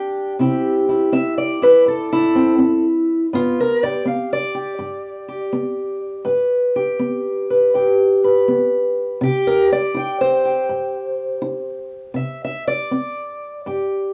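Acoustic country blues with a swaggering, rollicking mood at 82 BPM in a swung 4/4, carried by a solo fingerpicked steel-string parlour guitar that sits up front with a dark, boxy tone and audible finger squeak, moving through C, G and back to C at 9.2 seconds in a small booth-like room across this 14.1-second excerpt cut from a longer piece.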